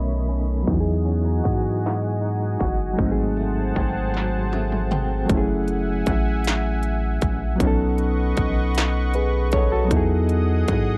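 A dry, close 1970s-style studio sound, softened by a low-pass filter, frames this tender, sensual slow R&B passage cut from a longer piece, in 6/8 at 52 BPM in E major, where a reedy, bright electric piano and a round, deep analog bass sit up front over a smooth, warbling, detuned sawtooth pad with chorus, a slightly broken-up, picked electric guitar with tremolo adds a second line until 5.9 seconds, and an industrial drum kit brings a distorted kick, clanging snare, crisp hats and toms, with a filter sweep opening the passage and a drum fill from 4.1 to 5.3 seconds leading into chords such as F#m9, B9 and Emaj9.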